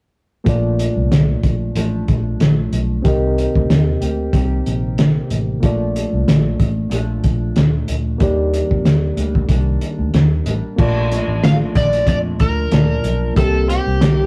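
Nostalgic and dreamy, this bedroom-pop excerpt at 93 BPM in Bb major sets a mellow, vibrato-tinged electric guitar and a reedy electric piano over a round, foam-muted fingered bass and a muffled, cloth-damped drum kit with a fat snare and dark cymbals, all in a gritty small-room sound moving through Bbmaj7, Cm7 and Ebmaj7 until a bright, overdriven slide guitar takes the melody up front at 11.4 seconds.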